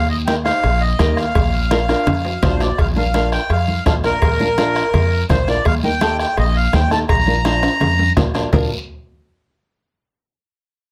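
Close, detailed microphones and light reverb frame this festive, joyful cumbia excerpt in Bb major at 167 BPM, with the chords moving between Eb and Bb. A reedy accordion with slow beating carries the melody up front over a woody, dark pizzicato upright bass, while a fingerpicked flamenco guitar, complete with finger squeak, adds warm accompaniment from 0.3 seconds. A distant, softly struck bombo, ringing congas in the background, metal-shelled cowbell and timbales, and a raspy guiro drive the groove, with drum fills at 2.1 and 7.6 seconds.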